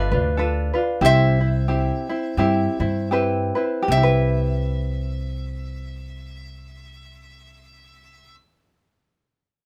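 A swung 4/4 lilt that slows down over the first 3.9 seconds carries this languid, sunny Hawaiian excerpt, where a nasal, metallic lap resonator guitar played with slide and fingerpicks sings the melody through plate reverb over a light, fingerpicked tenor ukulele and a woody, thumpy pizzicato upright bass on gut strings, both up front in a small room as the harmony moves from G9 to Cmaj7.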